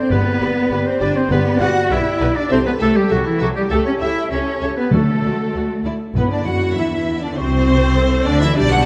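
Lively and cheerful, this quick classical-period orchestral passage, cut from a longer movement, carries a distant, expressive violin melody over bowed violas and a lush second violin line, with warm cellos and a rich, focused double bass section holding the bass, mellow French horns sustaining chords, a clear oboe and a dark solo clarinet weaving supporting lines, timpani on calf heads entering at 0.1 and 4.9 seconds, and an airy flute section joining at 6.2 seconds, within a moderate concert hall reverb.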